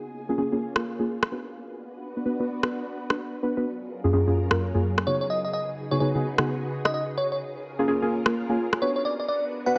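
Sunny and soulful, this short cut from a longer two-step UK garage track moves with a swung 4/4 shuffle. A silky, vintage string machine opens with mellow sustained chords under ensemble chorus, a filter sweep running through its sound as it sits low in the mix. Almost at once a deep, dark chord stab joins, its fast-attack hits decaying into a warbling haze of chorus and tape echo, with its own filter sweep. From 0.8 seconds a dry, overdriven electronic rim click sits up front, carrying the beat until 8.8 seconds. At 5.1 seconds a bell-like FM electric piano enters with a sparkling high melody, coloured by chorus and tape echo, over chords that drift from A#m7 through Bm, F#maj9 and C#9sus4, all set in a lush digital hall.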